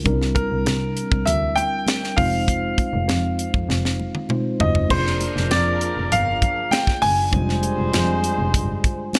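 Nocturnal and bittersweet, this short excerpt of polished 1980s jazz-funk pop moves in a straight, steady 4/4. A grand piano carries the melody up front, intimate and boxy, with its action noise audible, over a mellow tine electric piano that accompanies cleanly with a subtle chorus. Beneath them a bowed double bass sounds clear and earthy, its biting, nasal tone touched by light vibrato. A tight, dry funk kit with a high-tuned snare sits forward, while very quiet congas add bright, damped color. A drum fill from 3.7 s leads into the second half, where a horn section enters at 4.9 s with a present, jazz-style second line and vibrato as the harmony moves from C9 and Fm7 to Bb7/F and Fm69, all set in a studio reverb.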